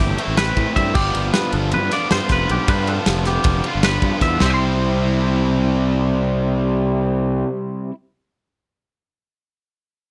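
Math rock and midwest emo in an intricate, playful 9/8 at 312 BPM counted in eighths, this short dry excerpt in C major moves from Am9 to G7 before settling on C at 4.4 seconds. A clean, twangy fingered electric guitar spins high arpeggios over a biting, double-tracked overdriven guitar riff and an up-front, growly fuzz bass. A loose small-room acoustic kit with a punchy kick and dark cymbals drives the opening, dropping out at 4.5 seconds so the guitars and bass carry the close.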